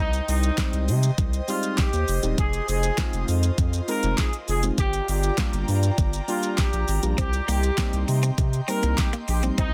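A dense, heavily limited and nearly dry mix carries this confident, bittersweet dance-pop excerpt, where a punchy vintage horn section with vibrato and tape echo plays the melody over a breathy, detuned pad with chorus, a deep saturated sub bass and a worn, slightly out-of-tune electric piano through phaser, those four pumping to the sidechain, while an up-front layered pop kit of knocking kick, fat snare, crisp hi-hat, handclaps and shaker keeps time and a clean, picked guitar riff with subtle chorus arrives at 7.2 seconds.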